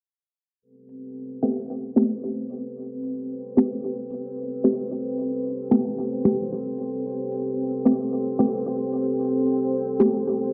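A muted, deep sawtooth chord stab with chorus, phaser and dub echo sits up front from 1.4 s in this hypnotic, nocturnal dub techno excerpt at 112 BPM, lightly swung on the 16ths in A minor and resting on Am9, over a moody, dark analog pad of square, sawtooth and triangle tones with a sub octave and moving notch, a bright, resonant bubbling texture of random filter steps, and a tape-warm electronic hi-hat tucked in the background, with filter sweeps on the stab and hats and the whole dreamy mix soaked in plate reverb.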